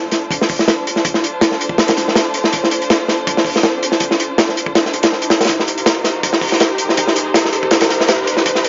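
A dry, gritty hardware recording with transformer saturation and light reverb frames this frenetic, atmospheric drum and bass and jungle excerpt at 162 BPM in D phrygian, which plays as a build-up throughout. Crunchy breakbeat drums with a punchy kick and a medium-tuned snare sit up front from 0.1 seconds, while a dark, bowed string section holds expressive sustained chords with vibrato and portamento, moving from Dm7 to Eb6 at 5.5 seconds over a deep, boomy 808-style bass kept very quiet. An electronic riser enters in the background at 2.3 seconds.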